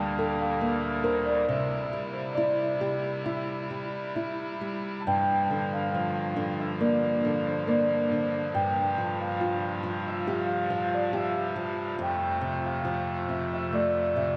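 A concert harp's ringing, thumb-plucked melody opens this gentle, tender lullaby at once, joined from the start by a dark, fingerpicked nylon-string guitar sitting small and up front, and by a pipe organ's hollow clarinet-stop chords with tremulant held softly beneath. The piece moves freely around 69 BPM in 4/4, passing from Gmadd9/D and C into a second section at 5.1 seconds that drifts through Gm7 and Csus4/G before settling on F at 12.0 seconds. A lingering cathedral reverb surrounds the live, single-room performance, which is cut from a longer piece.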